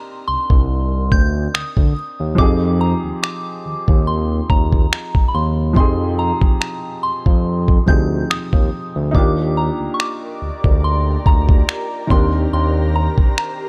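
Contemporary R&B with a moody, sensual air, where a soft FM synth bell with chorus, phaser and tape echo carries the melody over an intimate grand piano with audible action noise, a smooth, nasal detuned synth bass, and a gritty sampler-style drum kit of finger snaps and thumpy kick up front, before an ethereal, airy pad joins with sustained chords at 10.2 seconds in this dry excerpt cut from a longer piece.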